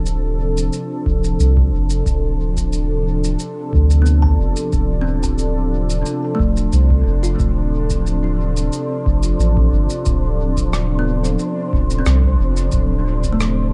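A straight 4/4 pulse at 90 BPM is set by a brushed shaker and rim click carrying dub echo, with a deep, tape-warm electronic kick joining in the background at 1.1 s, in this hazy, deep ambient dub piece cut from a longer work in D dorian. A round, soft sub bass sits up front under a smooth, detuned sawtooth pad with chorus that sustains a Dm7 chord, while an airy, breathy wind-like noise layer drifts in the background in its own reverb. At 4.0 s a woody kalimba enters with plucked arpeggios through a low-pass filter and tape echo, all within a dark, warm, dry production.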